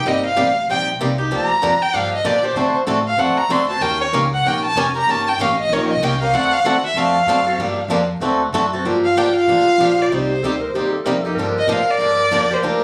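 A brisk swing at 191 BPM in 4/4, with a lilting shuffle on the eighths, drives this bittersweet gypsy-jazz excerpt in G minor, where a bright, boxy picked acoustic guitar and a woody, thumpy pizzicato upright bass on gut strings carry the minor-key changes under a dark, close bowed violin that takes an expressive solo, its soft attack, vibrato and portamento sitting up front. At 8.9 s a dark clarinet joins with a second line, its subtone, light vibrato and scooped notes lending a vintage jazz color. The room carries a moderate studio reverb with a phone-in-the-room intimacy.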